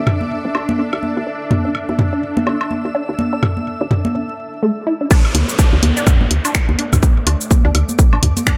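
Swung sixteenths drive this sparse, clinical minimal techno cut, taken from a longer piece. From the start, a woody, round FM bass sits up front with tube saturation and sidechain pumping, while overdriven electronic toms, woodblock and congas with delay enter at 0.1 seconds. A squelchy, resonant blip pluck riff joins at 0.4 seconds, coloured by phaser and dub echo. Around them a bright, cloudy granular pad and a tense, swarming drone in the background both breathe with sidechain pumping and their own reverb, and a downlifter sweeps through the opening and again later. At 5.1 seconds the drop arrives, as a punchy, tape-warm electronic kick lands up front alongside a house kit of finger snaps, hi-hat and shaker. The whole mix carries light reverb and a digital ambience.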